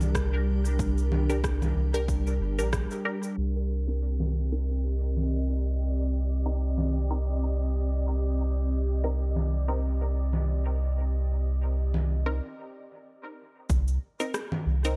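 A round, soft sub bass sits up front in this deep, spacious ambient dub cut, moving at 93 BPM in C minor with a swung sixteenth-note feel. Electronic congas, cabasa and rim click carry a tape-warm dub echo, while an overdriven kick sits in the background at the opening and returns briefly near the close. A muted, resonant filtered chord stab with phaser and echo enters at 1.3 seconds, and a calm, organ-like pad with ensemble chorus and built-in reverb moves from Gm to Cm7 at 3.4 seconds under a filter sweep before dropping out at 12.4 seconds for a break, all in a dry, low-pass-filtered mix.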